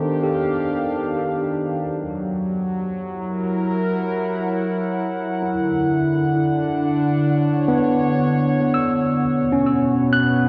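In a straight, unhurried 4/4, this warm, luminous ambient fragment drifts through Ebmaj9, F#7 and Dmaj7 before settling on B5 at 9.2 seconds. A warbling, nostalgic, lo-fi tape-like pad sits up front with sustained chords that blend sawtooth and triangle tones, with slow attacks and long releases softened by chorus and its own reverb. Alongside it, a worn, slightly out-of-tune tine electric piano plays clean arpeggios through an analog delay, and a long plate reverb wraps the echo-heavy mix in a hazy glow.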